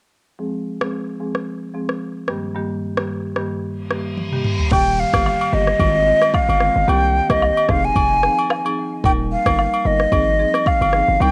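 A breathy, vibrato-laced jazz flute sits up front, its soft attack and lifted highs passing through cassette tape and tape echo for a slightly unsteady, hazy lead. This joyful, sunny afrobeats excerpt, cut from a longer piece, has a lightly swung 16th-note feel. It opens at 0.4 seconds with a woody rosewood marimba played with medium mallets, muffled by a low-pass filter and tape coloring. A filter sweep runs over the marimba as an electronic afro-pop drum kit adds a deep kick, rim clicks and toms. A reverse cymbal and downlifter enter at 3.9 seconds, and a drum fill leads into the second half. At 4.7 seconds the flute arrives along with a punchy, heavy 808-style bass that pairs a sine body and a noise layer with a fast attack and decaying tail, plus close and dry agogo bells and woodblock. The home cassette recording carries a light, small-room reverb, giving the sunny groove an intimate, lo-fi glow.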